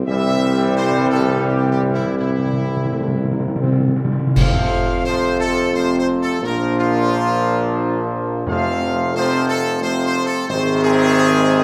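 Set in a wet recital-hall reverb, this regal, triumphant classical ceremonial fanfare in F major at 88 BPM in 3/4 has a bright trumpet section carrying the melody over sustained chords from mellow background French horns and a clear, tight trombone section, with a present, warm tuba on the bass and round, close timpani playing a fill from 0.1 to 4.4 seconds before dark clash cymbals and concert bass drum strike a band accent at 4.4 seconds as the harmony moves through Bb and F to an Ab at 10.5 seconds.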